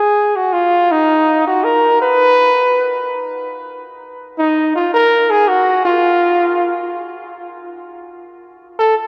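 Jazz excerpt at 109 BPM in 4/4 with a swung eighth-note feel, relaxed and playful, featuring a solo trumpet with a bucket mute that sounds veiled, punchy and forceful with vibrato, ranging from Eb4 to Cb5 from 0.0 to 8.9 seconds, sitting up front yet distant within a long, wet cathedral reverb that gives the church-like space a roomy character.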